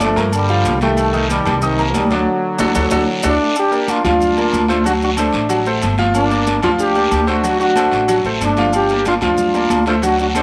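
A straight, driving salsa groove in four runs through this short passage cut from a longer piece, with ringing metal-shell agogo bells and timbales, bright thin-skinned congas played with soft hands, a raspy, band-limited vintage guiro and grainy, mellow maracas set close and dry. Leading the way up front, a clear, tight trombone section carries the passionate melody in a pop style with light vibrato. A brilliant baby grand piano supplies accompaniment with an open, long-sustaining tone, while a woody, warm pizzicato upright bass on steel strings anchors the low end. At 2.3 seconds the band hits a unified accent, with a drum fill entering at 2.8 seconds, and at 3.6 seconds the music moves into a new passage that alternates between minor and dominant chords. A moderate echo chamber reverb blends with the feel of a small room around the ensemble.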